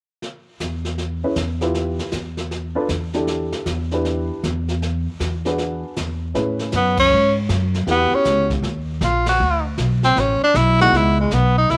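A bright tenor saxophone, up front and present, takes the solo melody from 6.8 seconds, shaping its jazz-style phrases with vibrato and scooped notes. This is a sophisticated, playful small-group swing and bop excerpt with a swung feel, cut from a longer piece. A brushed drum kit opens at 0.2 seconds, its dark cymbals, medium-tuned snare and boomy kick carrying a cassette-tape character. An upright bass follows, plucked and up front, with a woody, growly steel-string tone. A baby grand piano comps intimately with short sustain and audible action noise, also colored by the cassette tape. The recording sits in a small room with light reverb, captured at home on cassette, and two band accents punctuate the second half as the harmony moves through colors such as Amaj9 and C#m7.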